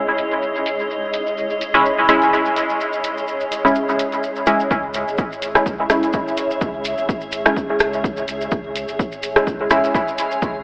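Dub techno at 126 BPM in C# minor, meditative and hypnotic, this fragment of a longer piece opens with muted, detuned sawtooth chord stabs, up front and soaked in chorus, phaser, cassette tape grit and dub echo, over a cloudy, blurred granular pad and a breathy, wind-like noise layer, while a filter sweep runs through the first 4.7 seconds. A tape-warm analog drum machine ticks out hi-hat and rim click alongside close, grainy maracas, with the pad and stabs pumping against the sidechain. At 4.7 seconds the airy texture ends as a punchy electronic kick and a round, deep sine sub bass arrive, the whole mix sitting in a huge ambient reverb with a low-pass, AM-radio haze.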